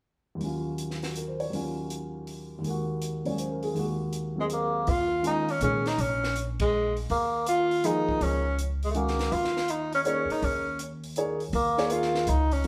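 An intimate grand piano, its action noise audible, opens at 0.4 seconds alongside a compact cocktail kit with dark cymbals, a high-tuned snare and a punchy kick, setting an intense, spiritual modal jazz feel in a swinging three-beat metre. A breathy, distant tenor saxophone takes the solo melody from 4.4 seconds with scooped notes and light vibrato, and a woody pizzicato upright bass soon joins underneath. The band hits a shared accent at 6.5 seconds, and the whole group sounds as if it is playing live together in a large, reverberant studio in this excerpt from a longer piece.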